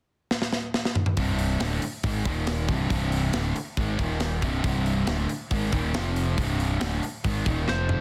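A dense, heavily limited hard rock excerpt in C minor at 138 BPM, menacing and driving, opens with a drum fill on a tight, up-front metal kit before a bright distorted guitar, a hollow-bodied overdriven guitar in the background and a growly picked bass hit a riff over Cm, Eb5 and F5 from 1.2 seconds, with a dark, slightly broken-up lead guitar entering on a high C at 7.7 seconds as the drums fill again in a small room.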